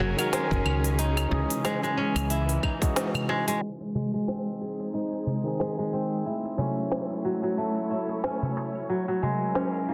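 A swung, hypnotic downtempo groove rides on an organic electronic kit of woody snare, crisp hats, shaker and claves, with a tight electronic kick up front until 2.9 seconds and a small, dry metal-shell darbuka. A round, hollow-body fretless bass holds the low end only until 2.6 seconds, while a fingerpicked, ringing kora spins delayed arpeggios and a barky tine electric piano adds a gritty, pumping accompaniment with echoes. Lush, dark bowed strings sit in the background of the earthy, cavernous mix, and a reedy gut-string cello enters only at the very end of this excerpt, at 9.9 seconds.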